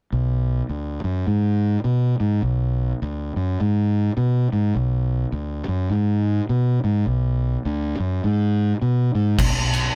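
A growly, fuzz-drenched fingered electric bass carries this sludgy, hypnotic stoner and doom metal excerpt in B dorian at 104 BPM with a swung 4/4 feel, playing alone and up front with overdrive until an oversized, low-tuned drum kit with a boomy kick, crash and ride enters at 9.4 seconds, all captured as a band playing live in one room with light reverb.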